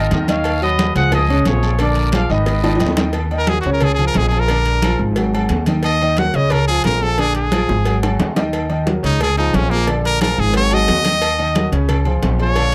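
Salsa with a danceable, driving feel: a tight, punchy trumpet section with tape echo carries the melody until 2.9 seconds, then a brilliant, forceful solo trumpet takes over from 3.4 seconds, over a dark, mellow grand piano, a woody, thumpy upright bass up front, bright, damped congas, round, compressed cowbell and bongos, distant, ringing timbales and agogo bells, and a raspy guiro that stops at 3.1 seconds, captured in a dry, close 1970s-style studio sound.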